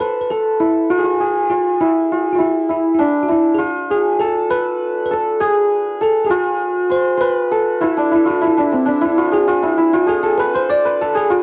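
Soulful and melancholic, this short excerpt of a Persian modal ensemble moves in a straight 6/8, tuned to A4 = 438 Hz. Up front, a shimmering, hammered santur carries the melody with an acoustic, ringing tone, while a bell-like tine electric piano plays a clean, direct second line in the same register. Both parts run the full 11.4 seconds, colored by cassette tape in a homemade recording with a light touch of reverb.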